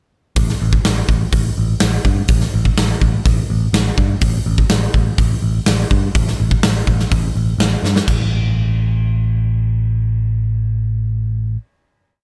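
Dry and up front, this short, complete hard rock piece drives hard at 124 BPM in a straight 4/4, with a big, natural-sounding acoustic kit of bright cymbals, punchy kick and medium-tuned snare laying down a big groove under a growly, amped picked electric bass pushing aggressive eighth notes through the riff, until a drum fill at 7.8 seconds leads into the bass's final note from 8.1 seconds to the end.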